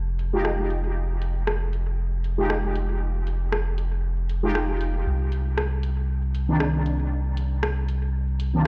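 Meditative and nocturnal, this short dub techno excerpt moves at 117 BPM in a straight 4/4 and sits in F minor. A deep, round sub bass with a sine tone holds the low end from the first moment, its sustained notes spanning F1 to C2 and sitting up front in the mix. An analog drum machine with a warm tape character enters at 0.2 seconds, playing hi-hats softened by low-pass filtering alongside rim clicks, all trailed by dub echo. A juicy, resonant polysynth built from detuned square and sawtooth waves arrives at 0.3 seconds, playing bright stabs between Eb3 and G4 while a filter sweep runs across the whole passage. Chorus, phaser, cassette tape coloring and dub echo thicken those stabs, and a large studio reverb places the music in a big, bare room, as if heard through a big sound system.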